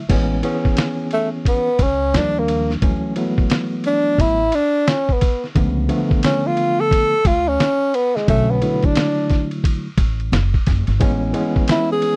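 Jazz-hop with a smooth, warm mood, this excerpt moves at an unhurried 88 BPM in A major with a swung sixteenth-note feel. A worn, slightly out-of-tune tine electric piano carries the chords from the very start, lightly overdriven and heard through its built-in speakers, moving from Amaj7 through Dadd9, C#7b9b13 and a rootless Bm7 before settling back on Amaj7. Beneath it, a pizzicato upright bass with steel strings gives a woody, growly low end, while a compressed, pitched-down sampler-style drum kit sits up front with a thumpy kick, fat snare, hi-hat, ride and crash, all muffled in that lo-fi way. At 1.1 seconds a breathy tenor saxophone takes the lead, playing a solo in a jazz style with subtone, light vibrato, soft attacks and scooped notes. The sound is dry and close, like a 1970s studio session with little reverb, keeping every part intimate and present.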